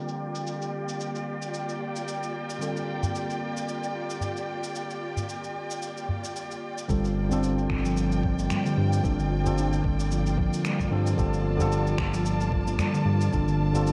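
Wrapped in worn, warbling cassette tape and a lush hall reverb, this earthy, mystical stretch of organic downtempo in G minor at 112 BPM opens on a clean tine electric piano with digital delay and a distant, bowed string section under a filter sweep, both pumping to a sidechain, joined by gritty, sampler-style shaker and finger snaps and, from 3.0 s, a small, dry udu, before a round, ringing steel tongue drum played with rubber mallets, a smooth, mellow sawtooth synth bass up front and a thumpy kick in the background all arrive at 6.9 s as the harmony shifts from Gm9 to Gm7.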